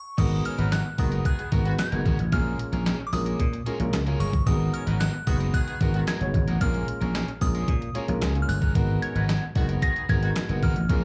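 A straight 4/4 groove at 112 BPM drives this late-night, funky slice of early-eighties boogie funk in G# dorian, cut from a longer piece and alternating between G#m9 and A#m7. Up front, a crisp 8-bit drum machine with an overdriven, sampler-style character hits a thumpy kick and a fat snare alongside handclaps, hi-hat and crash, sounding as if re-recorded in a small room, while a growly, punchy vintage slap bass sits just as forward from 0.2 seconds. A warm grand piano supplies the chords, and a twangy, slightly broken-up electric guitar picks a bright riff touched by subtle chorus and slapback echo. Above them, a delicate FM tine bell, the first sound heard at 0.0 seconds, carries the tinkling melody with fast-attack, decaying notes shaded by chorus, phaser and slapback echo. A clear, loose horn section with vibrato adds a distant, roomy second line from 0.4 to 10.3 seconds. The whole performance comes across like a live gig heard through a club's PA, with club reverb around it.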